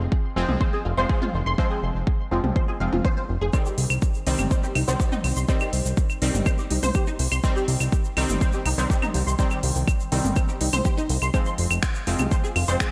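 Dark and cinematic, this melodic techno excerpt pairs a fat, saturated analog bass and a deep, up-front kick with brassy synth stabs treated with chorus, phaser and delay, a lush detuned unison pluck arpeggio, a tape-toned techno kit of claves, finger snaps, smooth hats and toms under gated reverb and sidechain pumping, and a grainy, close tube shaker entering at 3.5 seconds, all moving from F minor to C minor and back in a bright 1980s-style digital sheen.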